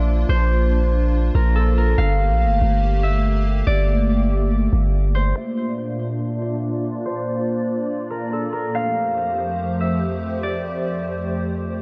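A half-time pulse at 142 BPM in 4/4 gives this floating, blissful excerpt of atmospheric cloud-rap in Bb lydian its slow, drifting feel. A deep, sine-toned 808-style bass holds long decaying notes up front until 5.3 seconds, under a hollow, flute-like pad of detuned, warbling chords with ensemble chorus and a low-pass filter, while a mellow, fingerpicked concert harp carries the ringing melody through tape echo. The chords move from Bb to Gmadd9 and back to Bb before settling on Fmaj7, a filter sweep runs from 5.4 seconds to the end, and the dark production sits in light small-room reverb.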